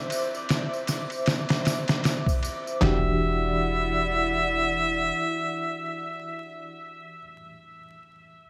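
A swung sixteenth-note groove in 4/4 opens this cinematic, melancholic trip hop fragment, cut from a longer piece. A compressed, pitched-down sampler-style drum kit sits up front with a thumpy kick, medium-tuned snare, handclaps, ride cymbal and toms, while a close, dry tambourine and triangle add faint acoustic sparkle. The tambourine and triangle drop away at 2.8 seconds and the drums follow around 3.0 seconds. Beneath them, a moody analog pad holds sustained chords from the start, its detuned, wave-folded tone thickened by chorus and a sub octave. At 2.8 seconds the harmony shifts to a minor ninth chord as a mellow harmonica takes the solo, its scooped notes and light vibrato roughened by vintage 12-bit sampler grit and tape echo. A reedy electric piano with medium and harmonic tremolo enters alongside it and carries on to the end, and a round, sine-like 808-style bass briefly supports it. 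Light reverb and a layer of vinyl crackle give the whole fragment a worn atmosphere.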